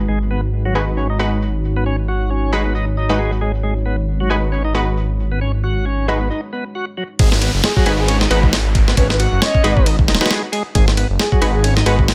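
An energetic, raw breakbeat cut in G# minor at 135 BPM opens on a G#m7 chord. A deep, moody pad pumps in the background, a thick, menacing detuned saw bass sits up front, a bright tonewheel organ with a slow rotary speaker shouts its riff, and punchy orchestra-hit-like stabs follow from 0.8 seconds. After a brief break, the drop at 7.2 seconds brings in a gritty, compressed soul sampler-style kit with a thumpy kick, together with a background downlifter, and a breathy, warbling flute-like synth lead with vintage small-speaker character joins at 7.6 seconds to carry the melody.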